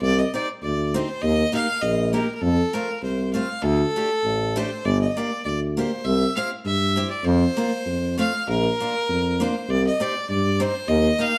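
Caught live in a stone room with a moderate reverb, this bouncy, jolly excerpt of alpine dance-band folk moves in a loose, rubato two-beat. A single bright, earthy bowed fiddle with light vibrato carries the melody up front, while a mellow tuba in classical style, roomy and distant in tone yet prominent in the mix, holds down the bass. From 0.3 s a picked steel-string acoustic guitar adds accompaniment with audible finger squeaks as the harmony wanders from Cmadd9 through Eb, F and Gm to close on Cm.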